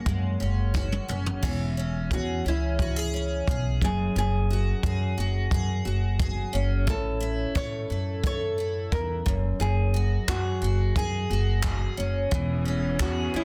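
A dense, heavily limited modern master with a small room ambience frames this heartfelt, carefree acoustic pop excerpt at 88 BPM in a straight 4/4, moving through F#add9, E6, F#sus2 and A chords. A fingerpicked nylon-string guitar carries the melody over a double-tracked, up-front picked steel-string acoustic guitar, a woody pizzicato upright bass and a jazz brush kit with dark cymbals, a boomy kick, handclaps and toms that plays a fill from 0.7 to 1.4 seconds. At 12.3 seconds a lush, bowed symphonic string section arrives with sustained vibrato chords.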